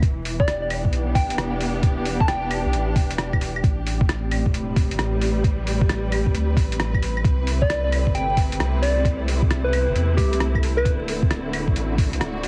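A lush, distant bowed string section with vintage sampler grit and sidechain pumping opens this ghostly, rainy future garage excerpt in E minor at 133 BPM, over a round sine sub bass, a muffled, thumpy electronic kick and an overdriven, pitched-down lo-fi kit of claves, hi-hat and rim click swung on the 16ths. A gentle, keys-like FM lead with chorus and tape echo floats in at 0.4 s and returns at 7.6 s, and a grainy, flickering granular texture settles into the background from 7.8 s as the chords move from Em7 through Am9 and Cmaj7 to D9. The whole mix has a heavily compressed radio sound, light reverb and vinyl crackle.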